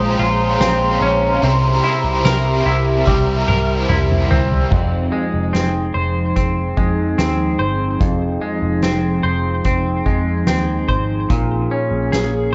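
Clean, bright arpeggios from an up-front semi-hollow electric guitar, treated with chorus and delay, sit at the front of this hazy, ethereal dream pop excerpt in F minor at 73 BPM, carried over a detuned, wave-folded tape-like pad, a round foam-muted electric bass and a distant, roomy drum kit played with soft mallets, which enters at 0.6 s and rolls through a fill from 3.1 s. A double-tracked overdriven guitar with tremolo and chorus bites through the opening until 5.3 s, while a very quiet celesta adds delicate bell-like tones around 2.7 s. The chords move from Bbm9 through C7 to Fm7, and the whole recording sounds worn and cassette-like, with warbling pitch drift, a dulled top end and a concert hall reverb.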